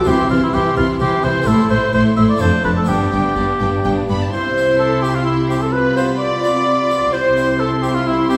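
Up front, a solo oboe with light vibrato carries the melody in this festive, lively excerpt from a baroque-style concerto movement in C major, moving in a straight 3/4 at 128 BPM alongside a smooth violin section on the high line. Behind it, a focused chamber violin section plays a second line and a viola section adds accompaniment, while a close-miked, brilliant harpsichord with octave strings sounds dry. Lush cellos and dark, expressive double basses with soft attack and portamento anchor the bass from 0.1 s, all heard from further back in a reverberant recital hall as the harmony moves from C through Am, Dm7/F and G before returning to C.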